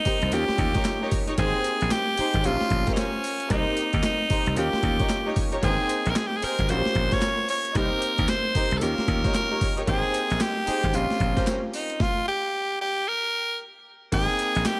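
New jack swing R&B at 113 BPM with a bouncy, confident swing, built on a gritty, overdriven breakbeat kit with thumpy kick, handclaps and tambourine, a punchy, glassy slap bass, and a warm vintage grand piano cycling through Eb7, Abmaj7, Bbm69 and Cm7. Up front, a raspy, forceful tenor saxophone carries the melody with vibrato, while a lush, bowed studio string section adds stabs until 11.5 seconds. The band hits a stop at 12.0 seconds before landing back on Abmaj7 at 14.1 seconds, in a short cut from a longer piece with light reverb.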